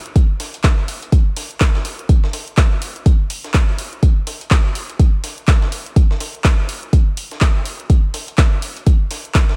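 A swung 4/4 house groove cut from a longer piece sets a hypnotic, late-night mood, led by a deep, layered electronic kick drum placed up front, with a deep house drum kit adding handclaps and hi-hat and, further back, a gritty, pitched-up breakbeat sampler-style kit contributing a high-tuned snare and high-passed, sidechain-pumped hats in a large-room sound, all within a dry overall mix.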